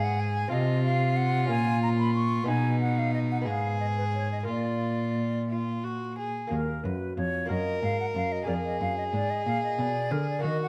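Grave and solemn, this baroque-style sonata movement with continuo moves at a slow 61 BPM in a straight 6/8, with the tuning set slightly low at A4 = 438 Hz. A bright silver concert flute carries the melody with an airy, expressive tone, soft attacks and vibrato, reaching from Bb4 up to Db6. Beneath it, a clear violin plays a smooth, even second line close up front, while a rich, focused cello anchors the bass, bowed with vibrato, and sits as the most prominent part. A delicate, fingerpicked lute with gut double strings fills in the accompaniment from the background. All four parts play throughout this cut from a longer piece, under harmonies that pass from Abm through Bbm and Bb before a second statement opens on Ebm at 6.5 seconds and closes on Bb7/F. Close, detailed microphones catch the players in a moderate recital hall reverb, and vinyl crackle lends the sound an aged patina.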